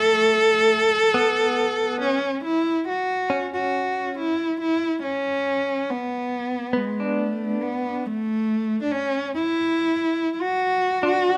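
Hopeful and tender, this short folk passage is cut from a longer piece and unfolds in a steady, straight four. A single bowed cello carries the melody, its dark tone sitting close and up front, shaped by expressive vibrato and gliding portamento. Beneath it, a clean electric guitar, recorded direct and compressed, plays picked arpeggios with a tremolo effect, sitting lower in the mix than the cello. The harmony opens on an Asus2, drifts through a G#dim and passages with the chord withheld, then settles on D near 9.7 seconds. A light reverb lends the pair a gentle sense of space as both parts play together from start to finish.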